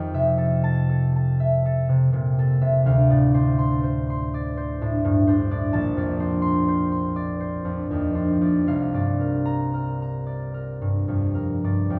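Bathed in a recital hall's lush 1.5-second reverb and heard from further back in the room, this peaceful, graceful classical solo for concert harp unfolds in a rubato 3/4 at 55-65 BPM, its bright, ringing, thumb-plucked strings sitting up front as it drifts from Fmaj9 through Dm7 and Bbmaj9 to a C9sus4 across a 12-second passage cut from a longer piece.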